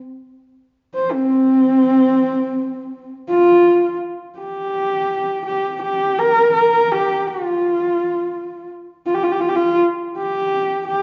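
Vast and windswept, this Mongolian traditional passage, cut from a longer piece, moves at a straight 83 BPM in 4/4. A single dark horsehead fiddle enters at 0.9 s and carries the solo between C4 and C5, its bowed horsehair strings sounding nasal, husky and woody, with light vibrato and portamento. A second section begins at 3.3 s, and the fiddle sits in a wet recital hall reverb with softened, rolled-off highs.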